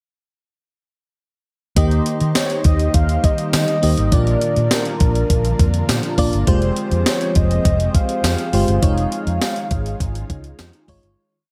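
A big gated backbeat from a thumpy digital drum machine, with a very quiet jingly tambourine on the backbeat and a dark, foam-muted fingered bass playing a syncopated pop-funk line, drives this nostalgic, urgent 1980s-style pop piece, where a lush, dreamy FM electric piano pushes chords over an ethereal airy pad, warbling synth brass swells long notes, and a mellow horn-like lead sings motif-based phrases through tape echo and shimmer reverb before the whole piece fades out from 8.8 seconds.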